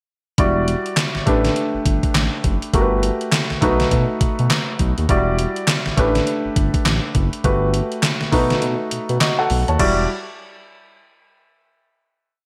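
A bright, 1980s-style digital production sits in a moderate plate reverb, giving this short new jack swing piece a punchy, slick finish. Up front, a gated 80s digital drum machine drives a hard-swung beat with a thumpy kick, an overdriven, gated-reverb snare layered with handclaps, hi-hat and crash cymbal, all sounding as if re-recorded in a large room. A smooth synth bass, blending sawtooth and square-wave tones with a fast attack and vibrato, plays a bouncy, swung synth-funk line dotted with muted ghost notes. A concert grand piano with a deep low end holds drop-2 voiced chords through Em9, A9sus4, Gmaj9 and B7, adding grace notes and short fills. The kick drops out from 8.6 to 9.8 seconds, and the piece then settles on a final Em9 chord from 9.8 seconds.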